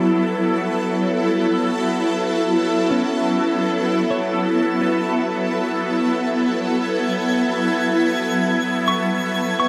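Bathed in a huge, wet reverb with a long 7.5-second tail, this spacious, reflective ambient piece, cut from a longer work and tuned to A4 = 443 Hz, drifts in free time over a sustained F#m7 chord held by an up-front, bright, ethereal pad with chorus, phaser and octave-up shimmer, while a clean, hollow-body electric guitar fades in with picked arpeggios through diffuse delay in the background, and a twinkling, sparkling granular texture enters at 6.4 seconds.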